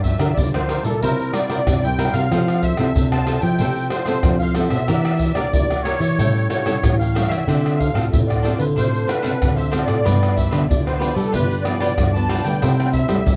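Festive and joyful, this short samba-and-choro cut from a longer piece sets a reedy, shimmering musette accordion melody over crisp picked cavaquinho and a fingerpicked classical nylon-string guitar tucked in the background. A second nylon-string guitar carries the bass line, thumb-plucked with audible finger squeak. Maracas, pandeiro, tamborim and a tight surdo sit up front yet carry a distant, large-room air, all wrapped in moderate studio reverb and a dark, warm production.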